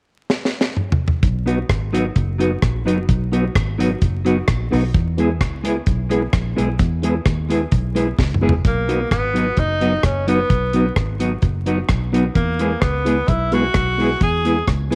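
A dry, up-front reggae drum kit opens this joyful, cheerful ska cut with a fill at 0.3 seconds, its high-tuned snare and tight kick setting a straight 129 BPM groove in B major. A round, foam-muted fingered bass, a dark, clean electric guitar with tremolo, and a soft, flute-like tonewheel organ playing stabs with chorus vibrato, key click and a stopped rotary speaker soon fill in over a simple B-to-E progression, all under a light studio reverb and vinyl crackle. After a second drum fill, a distant, roomy tenor saxophone with light vibrato takes the pop-style solo melody at 8.7 seconds, sitting up front until just before the cut ends.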